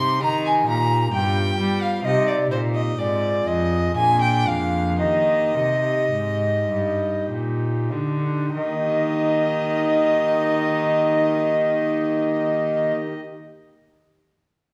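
A resonant recital hall wraps this excerpt in a generous, wet reverb that lingers about 1.5 seconds. It is a flowing, radiant baroque-style sonata movement in Eb major and 3/4, taken at a slow, rubato pace of roughly 46 to 66 BPM that gradually slows between 0.7 and 8.6 seconds. A bright, airy wooden baroque flute with a straight, tongued tone carries the second line in the same high register as the melody and sits prominently in the blend. The melody itself belongs to a single period-style violin with a gut-string, reedy sound, placed somewhat further back. Beneath them, a pipe organ on thick, romantic-voiced foundation stops supplies the accompaniment, while one bowed period cello adds a rich, nasal bass with light vibrato. The harmony moves from Eb through G7, Cm, Fm7/Ab and Bb7 back to Eb, and the organ sustains until 13.2 seconds, just after the other parts stop.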